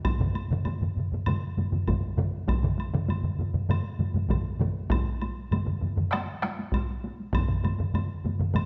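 Japanese traditional taiko drum ensemble music at 99 BPM in a straight 4/4, powerful and driving, cut from a longer piece: two solo taiko drum parts are struck with heavy sticks, one close and stopping at 7.5 seconds, the other compressed, saturated and up front, while two taiko ensemble parts played with hard sticks fill in behind, one vintage and band-limited, the other close and dry, and a woody, close and dry woodblock sounds underneath, all set in a dark production with a recital hall's reverb.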